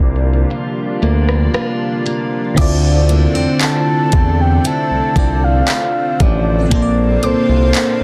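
A smooth, nasal synth bass sits up front in this moody, longing contemporary R&B piece at 58 BPM in D minor, its detuned tone carrying a gentle vibrato. Above it, a soft octave-layered synth lead sings the melody with a full, round, dark voice touched by chorus and tape echo, while a glassy FM electric piano with chorus and phaser plays decaying accompaniment and a lush, thick unison pad holds sustained chords. A picked steel-string acoustic guitar adds arpeggios with fresh strings and audible finger squeak. The produced drum kit enters at 0.2 seconds with a knocking kick, hi-hat, rim click, handclaps and crash cymbal, and the opening passage features a filter sweep and a break before the harmony moves from C9sus4 to Dm9 at 2.6 seconds, where a woody, mallet-like synth pluck joins quietly in the background. The dry, dense, heavily limited mix closes the cut on Bbmaj9, leaving the sense of a section taken from a longer piece.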